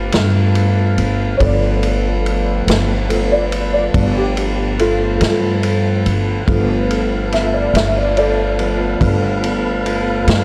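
Drenched in a huge, dreamy ambient reverb, this laid-back, gritty slow blues in 12/8 rests on a single G9 chord, with a clean tonewheel organ holding sustained chords through a slow rotary speaker, its key click audible, a woody pizzicato upright bass up front, and a vintage kit of punchy kick, medium-tuned snare and dark ride cymbal, while a mellow, deep-voiced concert grand piano thickened by ensemble chorus enters at 1.4 s to take the solo spotlight.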